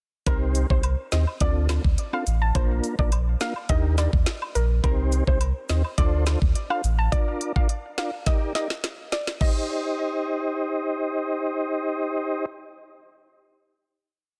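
Dry, dense and heavily limited, this short, complete dancehall piece has a tough, sultry mood at 105 BPM in 4/4 with a straight feel, set in C dorian and tuned to A4 = 444 Hz. An electronic island pop drum kit sits up front, its knocking kick syncopated and answered by a woody snare, with smooth hi-hats and a crash cymbal, and it plays a drum fill from 8.3 to 9.4 seconds. Beneath it, a deep, round sine sub bass with a fast attack holds syncopated low notes until 7.1 seconds, while a mellow, flute-like tonewheel organ plays clean syncopated chords with chorus vibrato and audible key click. A soft, dark pluck blending triangle, sine and sawtooth tones with a noise layer and filter sweep carries the decaying, syncopated hook, coloured by chorus and delay. Close acoustic woodblock and cabasa, along with egg shaker and group handclaps, tick along in the background. The chorus cycles through Cm, Dm7, Bb and Ebmaj7 before the organ and the pluck ring out on a final Cm chord.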